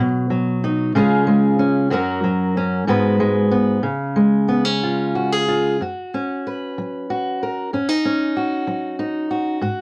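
Pastoral and peaceful, this short folk excerpt in F# major features a solo fingerpicked steel-string acoustic guitar, dark and up front with audible finger squeak, moving rubato at about 62 BPM in 6/8 through chords from B and C# to G#m7 and D#m7/F#, all set in a small room and colored by the worn, warbly pitch drift of old cassette tape.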